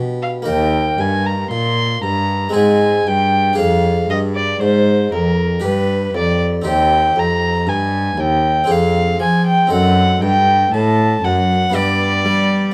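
A bright, airy harpsichord and a close, rich cello open this baroque-style sonata movement in 3/4 at 59 BPM, tuned to A4 = 438 Hz, and a dark, nasal violin enters at 0.2 seconds to carry the melody high above the continuo. Both bowed strings have a reedy, period-style gut tone, with the violin distant yet up front, while the harmony moves from Eb through Ab and shadowy diminished chords toward a close on G. The mood is introspective and flowing, set in a moderate small-room reverb, in a passage cut from a longer piece.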